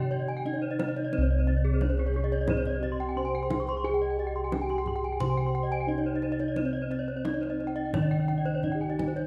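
A moderate scoring-stage reverb with a 1.9-second tail surrounds this hypnotic, brilliant Balinese gamelan excerpt, cut from a longer piece and moving in a straight 4/4. Up front, bossed gongs carry the bass with round, beating, airy tones struck with padded beaters, while a kendang adds deep, vintage, band-limited percussion under soft hands. A bronze metallophone played with padded disc mallets holds the melody in a mellow, soft voice with the boxy colour of a small room. Two more metallophones, struck with horn mallets, ring out bright arpeggios whose paired tuning creates shimmering beats. From 1.8 seconds a pure, breathy sine lead with chorus and vibrato glides in the background as a second line, sustained and gentle in attack.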